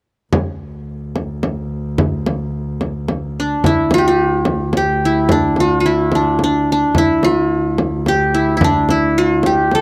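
Arabic maqam ensemble music in a festive, warm mood, moving in a straight three-beat metre and cut from a longer piece. A single bowed double bass holds a rich, focused drone on a low D with vibrato, while a close, up-front frame drum keeps the pulse from 0.3 s. At 3.4 s the plectrum-plucked qanun enters with a bright-edged, triple-strung melody between D4 and A4, sitting prominently at the front of a dry, intimate 1970s-style studio sound.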